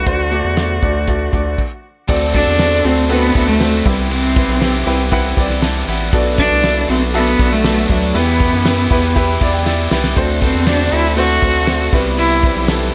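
Set in a moderate large-studio reverb, this hopeful, anthemic piano-driven pop excerpt moves at 119 BPM in a straight 4/4, with a rich, bowed cello carrying the melody up front over a clear concert grand piano, a round, deep analog bass and a damped 70s drum kit with a fat snare and dark cymbals. After a brief stop ending at 2.1 seconds, a bright, overdriven semi-hollow guitar riff enters and a jingly tambourine sits in the background, while the chords travel from D through Cmaj7, Bm7 and Em to D7 before returning to Cmaj7. The piano adds fills along the way, and a drum fill arrives at 9.7 seconds.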